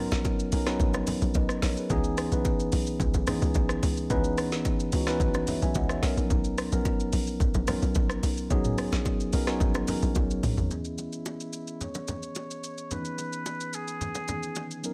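Soulful and hypnotic, this amapiano groove sits in a straight four-four pulse. A mellow tine electric piano, clean, low-pass filtered and heard as if through built-in speakers, sits up front with chords moving between Bmaj9 and C#m9. Beneath it, a tight FM log drum bass with a fast attack, a noise layer and a punchy decay carries the low end. An electronic, produced afro-pop drum kit with a deep kick, woody snare, metallic hats, rim click, shaker and toms plays up front, while ringing, close and dry bongos and congas struck with hard hands stay in the background. After a drum fill, the log drum bass stops at 10.7 seconds and a filter sweep begins as a solo trumpet with a metal mute enters, brilliant yet buzzy and thin, with light vibrato, a soft attack and a classical style, sounding distant and roomy through low-pass filtering and digital delay. A digital ambience wraps the whole track.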